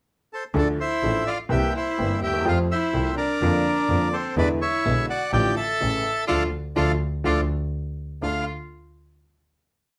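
A close, dry-edged studio sound with moderate reverb frames this short, complete tango in D minor, tense and passionate, at 125 BPM in 4/4 with a rubato feel. The reedy bandoneon enters first at 0.3 seconds and carries a motif-based melody in period phrases, up front and partly doubled in thirds. A brilliant upright piano, woody with audible action noise and long sustain, joins the bowed double bass in a marcato tango rhythm in four, the bass focused and close with vibrato. A single violin adds a soft-attacked, expressive second line with portamento and octave doubling. The harmony moves from Dm through C7, Fadd9 and E7, and the band strikes a shared accent from 6.3 seconds before settling on a final D minor chord at 8.2 seconds.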